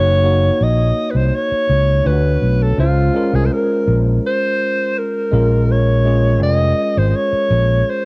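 Recorded at home on cassette with light reverb, this short excerpt of lush 1970s-style soul features an up-front, mellow alto saxophone carrying the melody in a jazz style with vibrato, subtone and scooped notes through an analog delay, over a clean tine electric piano heard through its built-in speakers with a cassette-tape effect and a punchy, amped fingered electric bass that stops at 7.8 seconds, as the chords move from Gb6 through Dmaj7 and Dbmaj7 to Bbm7.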